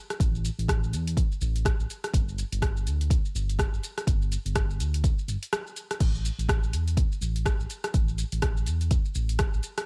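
A smooth, dark synth bass glides up front through this short afro house excerpt, blending sawtooth and square-wave tones with a fast attack, sustained notes and portamento slides between G1 and E2, all pumping through sidechain compression. A deep, layered electronic kick sits up front as well, its tape-warm punch coloured by re-recording in a small room. A produced deep house kit fills in around it with crash cymbal, hi-hat, rim click and shaker, sharing that same tape-tinged, small-room character. The groove moves at 124 BPM in 4/4 with a 59% swing on the sixteenths, giving the earthy, warm mood a swung feel. The mix stays dry and close, and a brief break between 5.5 and 6.0 seconds interrupts the single section before the parts carry on to the cut.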